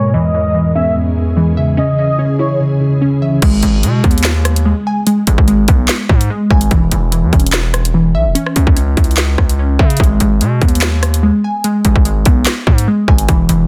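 A half-time drill groove at 146 BPM in G# minor sets an ominous, dark tone in this cut from a longer piece, opening with a mellow tine electric piano, an ethereal pad with a slow attack and long release, and a smooth, velvety synth lead with vibrato and tape echo that drops away at 2.6 seconds. A glassy, crystalline wavetable pluck carries detuned arpeggios through the whole passage, with a filter sweep over the opening. At 3.4 seconds the hip hop beat arrives, bringing an up-front electronic drill kit with a hard-clipped kick, sharp snare, hi-hats, handclaps, rim clicks and crash, alongside a heavy, saturated 808-style bass, all within a dense, heavily limited master with light digital ambience.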